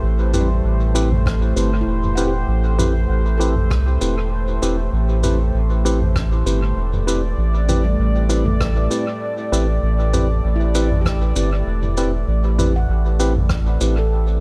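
A deep, round sub bass sits up front in this hazy, meditative fragment of ambient dub, its tube saturation adding grit as it holds the low end under a single Am7 chord in A dorian. Around it, a warbling, nostalgic pad drifts with lo-fi, detuned character, its sustained chords softened by chorus and its own reverb. A clean tine electric piano plays stabs through a combo amp, its notes thrown into dub echo. A distant, roomy soft-mallet kit of rim click, shaker and toms, also echoed, moves at 98 BPM in 4/4 with a light swing on the 16ths. A bright, ringing handpan plays arpeggios in the background from 0.4 seconds, and a very quiet, overdriven electronic kick joins at 1.3 seconds, all set in an echo-heavy studio reverb.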